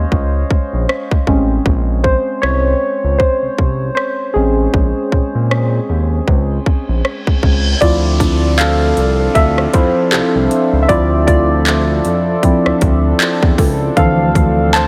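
The soft, round electric-piano-like synth keys lead this late-night, moody contemporary R&B excerpt in D minor at 78 BPM with a swung sixteenth feel, their mellow, chorused tone sitting up front over a smooth gliding synth bass and an overdriven trap kit of hard-clipped kick, metallic hi-hats, handclaps and rim clicks. A reverse cymbal and downlifter arrive at 7.0 seconds, and from 7.8 seconds the harmony moves from Bbm9 to Dm9 as a detuned analog pad with sidechain pumping joins in the background, followed by a very quiet, woody mallet-like synth pluck at 8.2 seconds. Light reverb and digital ambience surround the mix.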